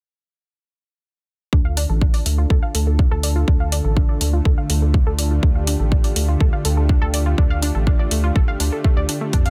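A punchy, up-front electronic kick drives this dark, cinematic melodic techno at 123 BPM in a straight 4/4, joined by an overdriven hi-hat, as a round, deep analog bass and a smooth, warbling pad with lush chorus pump together on a D minor chord from 1.5 seconds. Over them a detuned, bright analog pluck spins arpeggios through chorus and delay under a filter sweep, while a very quiet, tense, string-like drone with vibrato and built-in reverb slips in at 3.9 seconds. The sound is a dense, heavily limited modern master set in digital ambience, cut from a longer piece.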